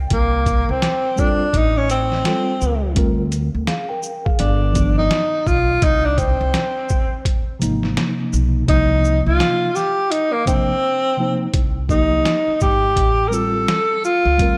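A swung 84 BPM groove in 4/4 comes from a gritty, pitched-down, sampler-style trip hop kit with a thumpy kick, hi-hat, shaker and snare, beneath a woody pizzicato upright bass in this mellow, smoky jazz-hop piece in C minor. A breathy tenor saxophone carries a whispered, intimate solo with subtone, vibrato, scooped notes and slapback echo, and a clean tine electric piano enters at 1.2 s, moving through chords such as A7alt, Bb13/D, G7b13 and Cm7 in light reverb. The drums drop out briefly at 10.8 s before a new section begins at 11.5 s.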